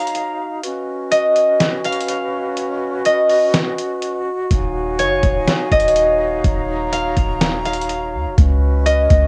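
A hazy home cassette recording in a small, moderately ambient booth gives this short cut from a longer piece of atmospheric cloud-rap a worn, intimate sheen. At 124 BPM in 4/4 with a half-time feel in Eb minor, the mood is melancholic and ethereal, moving from Ebm9 to Db9sus4 and on to Ebm11. A fingerpicked concert harp carries the melody in a narrow upper range, its ringing acoustic tone trailed by tape echo, while a breathy small flute group holds sustained chords with vibrato, a crisp attack and lifted highs, its unsteady tone shaped by sidechain pumping. Up front, a gritty, pitched-down, sampler-style trip hop drum kit plays hi-hat, a thumpy kick and a medium-tuned snare with a compressed sound. The opening break lasts until 4.5 s, when a soft, round, 808-style sine bass enters, deep and dark with a fast attack that decays under the chords.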